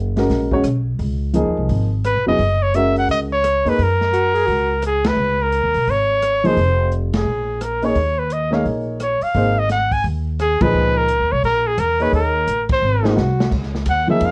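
Small-group swing jazz at 172 BPM in Db mixolydian with a relaxed feel, where a vibrato-laden trumpet with scooped notes leads from 2.1 seconds over woody pizzicato upright bass, up-front baby grand piano comping, and a dark, boomy small-room drum kit, while a soft-attack subtoned alto saxophone adds brief second lines, band accents punctuate the groove, a drum fill arrives at 12.8 seconds, and the whole cut carries light reverb and the warble of worn cassette tape.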